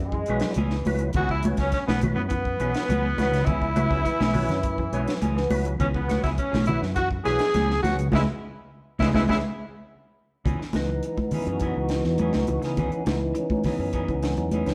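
Funky, intense afrobeat at 103 BPM in C# minor, rooted on a C#m7 chord, where a raspy, gritty tenor saxophone carries the melody up front, shadowed by a breathy, whispered trumpet and a veiled cup-muted trombone section in the distance, all over punchy fingered electric bass, a dry funk kit with a high-tuned snare, soft-handed damped congas, two dark clean electric guitars (one playing tremolo arpeggios, the other spring-reverbed stabs) and a fat, key-clicking percussive tonewheel organ through a slow rotary speaker with chorus vibrato; after a band accent at 8.1 seconds the horns drop out at 9.4 seconds, and from 10.5 seconds the organ takes a solo, the whole band playing live in a stone room.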